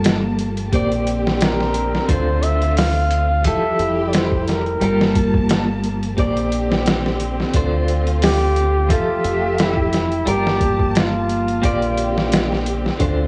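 Cinematic and smoky, this 88 BPM trip hop excerpt sets a veiled, bucket-muted trumpet melody with tape echo over a clean electric guitar colored by tremolo, 12-bit sampler grit and a filter sweep, lush bowed strings with portamento, a round, punchy dub bass and a compressed, pitched-down drum kit with a thumpy kick, all cycling through Gm9, Bb69, Dm7 and Fmaj9 beneath the wobble of worn, warbling cassette tape.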